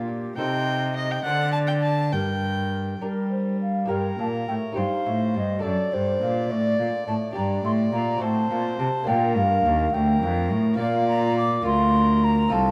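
Classical chamber music in a baroque-style sonata movement with continuo, this short passage cut from a longer piece moves in a lilting 6/8 with a radiant, serene mood. A wooden baroque flute carries the melody with an airy, mellow tone, tongued notes and expressive vibrato, set back at a slight distance. A single violin joins at 0.4 s on a second line, its gut-string sound reedy and lightly touched with vibrato in period style. Beneath them a bowed solo cello sits up front, giving a rich, gut-strung bass, while a fingerpicked lute on doubled nylon strings, some in octaves, adds bright, delicate accompaniment. After the opening phrase a new section begins at 3.9 s, and the harmony settles back onto G minor several times before turning toward B-flat near the close. Light reverb and close, detailed microphones keep each line clear and intimate.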